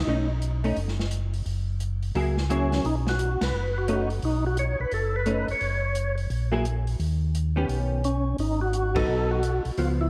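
A round, dark tonewheel organ bass line opens this greasy, soulful soul jazz organ trio fragment, with a brief percussive organ figure above it and a clean, picked hollow-body electric guitar comping just behind. The acoustic jazz kit joins at 0.4 seconds, its boomy kick, medium-tuned snare, hi-hat and dark ride cymbals sitting low and smooth in a small room, with a swung feel throughout. At 2.5 seconds the lead organ returns with the melody, its fat, lightly overdriven tone carrying key click, second-harmonic percussion, chorus vibrato, a slow rotary speaker and analog delay. The compressed guitar adds an ensemble chorus shimmer to its chords, moving through extended and altered harmonies such as ninths, an augmented seventh and a minor seventh, while the band hits accents together at 3.4 and 8.9 seconds. Both organs sit up front, and plate and small-room reverb give the whole trio a dreamy, soaked atmosphere.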